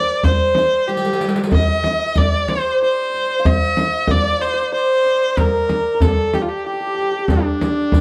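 Persian modal ensemble music in dastgah shur on D, soulful and longing at 94 BPM in a straight 3/4, where a biting, focused, up-front bowed kamancheh carries the melody with vibrato, portamento and plate reverb over a shimmering, ringing hammered santur second line, while a warm tombak, a deep, saturated frame drum and a distant riq with bright jingles enter at 0.2 s and a drum fill sounds from 0.9 to 1.5 s, all in a dark, moderately reverberant studio production cut from a longer piece.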